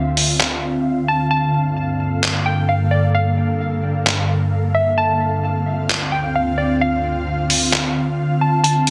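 A half-time 4/4 groove of gritty, pitched-down, sampler-style handclaps and hi-hat, entering at 0.2 seconds and sitting up front, drives this hazy, ethereal cloud-rap hip hop excerpt, where an airy, detuned pad with ensemble chorus holds slow-blooming chords moving from Dm7 to Gm7 and back, while a warbling, lo-fi pluck, dark behind its low-pass filter and trailed by tape echo, carries the melody, the music briefly dropping into a silent gap at 0.9 seconds within a dense, heavily limited mix set in moderate digital room reverb.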